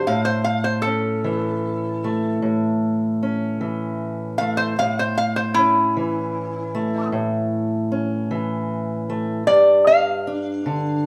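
A slow, straight 12/8 pulse at 51 BPM carries this soulful, gritty acoustic country blues duo, tuned to A4 = 442 Hz, an 11.1-second excerpt cut from a longer piece. Up front, a lap resonator guitar played with slide and fingerpicks sings the melody in a metallic, nasal voice. Beneath it, a boxy parlour steel-string acoustic guitar is fingerpicked in the lower register, sitting on A before moving to a G7 chord with its third omitted at 9.5 s, all heard as a live performance in one room with a large, wet studio reverb.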